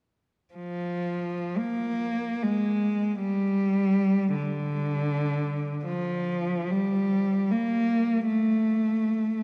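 A single bowed cello, rich and focused with vibrato, plays up front in a serene, nostalgic classical passage cut from a longer piece, moving freely in a rubato 3/4 at roughly 44-80 BPM within a register from D3 to Bb3, from 0.5 to 9.4 seconds, its close sound set in a cathedral reverb with a 4.1-second decay and a dark production, shifting into a second section at 5.9 seconds.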